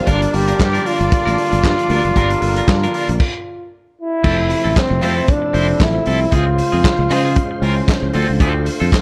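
Disco at 115 BPM in F major, this joyful, danceable cut from a longer piece rides a lightly swung sixteenth-note feel through a dark, small-room production. A clear, vintage-toned trombone carries the melody up front until 8.2 seconds. A rich, lush string section adds a bowed second line in the background until 7.3 seconds. Underneath, a growly, punchy fingered bass and an acoustic drum kit with muffled, rolled-off cymbals, a punchy kick, snare, hi-hat, handclaps and crash sit close to the listener. A bright, scooped clean guitar with tube saturation and harmonic tremolo joins a barky tine electric piano, overdriven through a combo amp with phaser, and a very quiet, gritty tonewheel organ holding sustained chords on a slow rotary speaker. The band drops into a stop from 3.2 to 4.2 seconds, then the harmony moves from Gm7 to Fmaj7, Dbmaj7 and Dm7.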